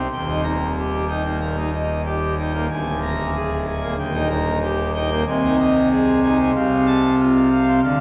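A classical organ toccata fragment at 93 BPM in a straight 4/4, majestic and jubilant, with a solo pipe organ on full organ and mixtures sounding brilliant and up front in a romantic voicing from a deep D1 to Bb5, moving through Eb, Bb7/D, Eb, Ab/C and F/C over 8 seconds, tuned to A4 = 438 Hz and bathed in a long, wet cathedral reverb of about 5.6 seconds with a touch of small-room ambience, as if heard from further back in the space.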